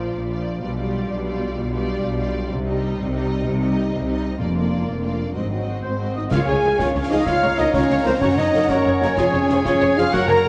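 Heroic and adventurous, this cinematic adventure-score fragment in 12/8 sets a lush, vibrato-rich violin melody over a violin second line, a close viola accompaniment, mellow French horn chords, ringing harp arpeggios and a bowed cello and double bass foundation. At 4.4 s hard-mallet timpani enter, and at 5.8 s a clear oboe, an airy distant flute ensemble and distant trumpet stabs join. A lift at 6.3 s then brings snare, dark clash cymbals and bass drum, followed by quiet trombone chords and a bright solo clarinet, all heard in a scoring-stage reverb through worn, warbling old cassette tape.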